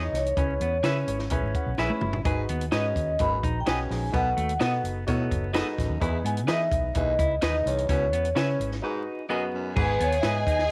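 A small, lightly reverberant room and a layer of vinyl crackle frame this driving, urgent slice of uptempo 1960s-style soul, where a mellow, airy soft-mallet vibraphone carries the melody over a polished grand piano, a clean hollow-body guitar riff, slightly broken-up picked guitar stabs, a round, foam-muted fingered bass and a dry cocktail kit with a punchy kick, high-tuned snare and dark cymbals. A breathy baritone saxophone riff joins at 2.3 seconds after a piano fill, and the band breaks just before a lush, bowed string section enters at 9.8 seconds.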